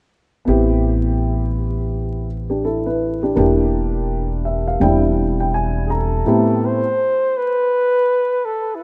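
Swung 16ths at 83 BPM in 4/4 give this cool, mellow hip hop cut in A minor its loping pulse, as a dark, slightly detuned upright piano and a growly, woody pizzicato upright bass sit up front over Am9, Em7b5 and E7alt. The vintage-sounding piano adds a fill from 4.1 seconds, and a breathy, soft-attacked flugelhorn takes a jazz-style solo with vibrato from 5.9 seconds, carrying the music back to Am9. A lush hall reverb and vinyl crackle wrap this rough home-demo mix, which is cut from a longer piece.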